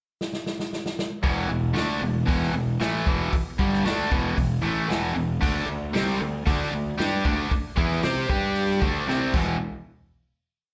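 A straight 4/4 pulse at 115 BPM drives this heavy, smoky blues rock and southern rock piece in E minor, with a vintage drum kit opening on a fill at 0.2 seconds before its punchy kick, medium-tuned snare, hi-hat and crash settle into a big rock groove. At 1.2 seconds a bright, double-tracked cranked stack guitar enters with an overdriven power-chord riff touched by slapback echo, doubled by a growly fuzz bass playing driving eighth notes, as the harmony moves from Em through D5, G5, C5 and E5 toward a final hit at 9.6 seconds. It sounds like a live club gig heard through the venue's PA, with club reverb and lossy compression artefacts around the up-front drums and guitar.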